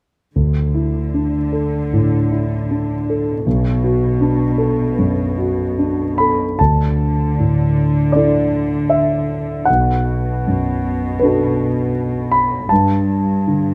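A bowed cello section enters at 0.3 s, shadowy and intimate, played sul tasto with light vibrato on a low bass line, and a mellow concert grand piano joins at 0.4 s with deep-bassed accompaniment. This tender, hopeful cinematic film cue moves at a rubato 78 BPM in D major, circling Dsus2 and Bm7 before settling on G5 near its close. Both instruments sit up front under close, detailed microphones and light reverb, the piano the more prominent of the two, in a passage cut from a longer piece.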